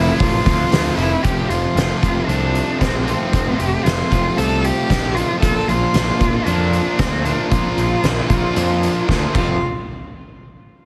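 A bowed cello carries the melody from the very start of this bittersweet, anthemic quiet-loud alternative rock fragment. Its tone is rich and expressive, with vibrato, soft attacks and portamento, set up front over a distorted electric guitar riff, a fuzz guitar riff and a growly, overdriven fuzz bass. An oversized, low-tuned acoustic drum kit enters at 0.2 seconds, placed up front with a fat snare, boomy kick and dark cymbals in a bright stone room, its sound saturated and rolled-off at the top. From 1.2 seconds a very quiet, slightly broken-up guitar through a small old amp adds lo-fi picked arpeggios as the harmony moves from Fadd9 to Bbmaj7. A drum fill at 9.1 seconds leads back to Fadd9 under light reverb and a heavily compressed, radio-like sound.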